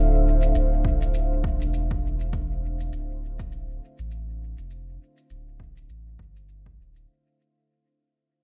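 A soft, round dub sub bass sits up front, its triangle and square wave tone holding low notes with a fast attack and long sustain. Above and around it, a dark, moody ambient pad built from detuned sawtooth unison layers, sine and a sub octave swells in slowly and holds a Dm7 chord, coloured by chorus and its own reverb. A quiet overdriven electronic shaker enters at 0.4 seconds with studio reverb and dub echo, followed at 0.8 seconds by a punchy, layered electronic kick drum, also overdriven and touched with studio reverb, which drops out at 6.8 seconds. This deep, spacious ambient dub moves at 101 BPM in 4/4 in D minor, with a 58% swing on the 16ths. The short cut from a longer piece sits in a fairly dry overall space and fades out across its whole length.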